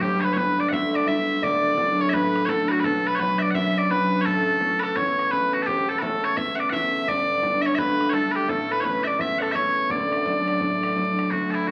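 Cheerful and bright, this Celtic hornpipe in D major trips along at 170 BPM with a swung feel. Loud, piercing bagpipes carry the melody up front, while an airy, tongued wooden flute adds an expressive second line until 11.2 s, and a ringing, fingerpicked concert harp moves through G, D, B minor and A beneath them as a damped, tight bodhran keeps time in the background. At 11.3 s a biting, bowed cello with vibrato slips in on a low D drone, and the recording carries a wet studio reverb and the crackle of a very old 78 rpm record.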